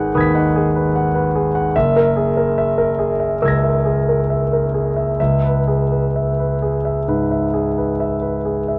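Rubato phrasing in 4/4 shapes this wistful, mysterious fragment of impressionist classical solo piano, cut from a longer piece, where an intimate, up-front concert grand spanning F#1 to B6 plays for all 8.8 seconds with deep bass, long sustain and audible action noise through G#m7, F#9 and C#m7 harmonies, set in light reverb and colored by worn, warbling old cassette tape with pitch drift.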